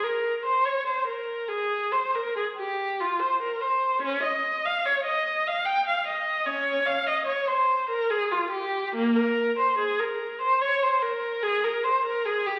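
Classical baroque-style suite movement in 3/4 with a rubato feel, cut from a longer piece, in which a single bowed viola plays alone for its full 12.6 seconds with a rich, expressive tone, vibrato and portamento, its introspective, grave line set in the reverb of a recital hall and heard through the crackle of a very old 78 rpm record.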